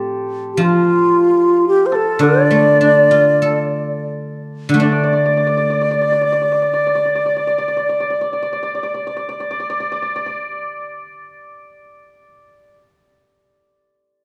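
The end-blown bamboo xiao carries the melody up front, its airy tone marked by vibrato, a crisp attack and lifted highs as it sings between 0.5 and 9.6 seconds. This graceful, tender passage of Chinese traditional chamber music sits in the D yu mode, in a rubato 2/4 that drifts between 39 and 60 BPM and slows over its opening seconds. The guzheng, also up front, plays fingerpicked accompaniment with a bright, silvery ring across its lower and middle range. Behind them, the hammered dulcimer adds a mellow, shimmering second line that continues to 12.7 seconds, the last part to sound. A moderate recital hall reverb and a dark, warm production frame this short excerpt cut from a longer piece.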